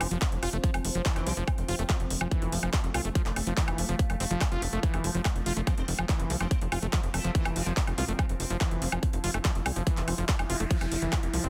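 A driving, straight 4/4 pulse at 143 BPM carries this intense psychedelic trance excerpt in F major, with a punchy, up-front electronic kick arriving at 0.2 s over a big-room dance kit of handclaps, metallic hi-hats and woodblock, while a tight sawtooth sequencer bass plucks low and a squelchy, gritty acid bass riff pumps through tape echo. Behind them, a wave-folded drone holds sustained chords with moving overtones, chorus and reverb, and a bright, metallic wobble bass with lush chorus and digital delay flickers at 1.2 s before surfacing again from 5.7 to 7.7 s. Background zaps enter at 8.0 s and a noise sweep rises at 10.3 s, all within a dense, heavily limited modern master with light digital ambience.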